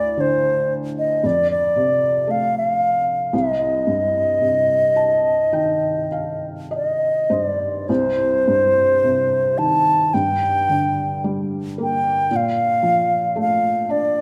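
The rhythm moves in a free, rubato 4/4 at a slow 49-58 BPM, in the manner of a Celtic slow air. This haunting, mournful folk piece sits in C dorian, with a baroque flute carrying the melody from start to finish. The flute's wooden, pure tone is shaded with vibrato and a crisp attack, close-miked and up front. Beneath it, a felt-muted upright piano accompanies throughout, soft and mellow with an intimate quality and audible action noise. The harmony passes through F and Cm before the piano adds a fill from 4.4 to 7.9 seconds, after which a second section begins and the chords move through Gm and Bbmaj7. A moderate concert hall reverb lends the recording a gentle sense of space, and the passage is a fragment cut from a longer piece.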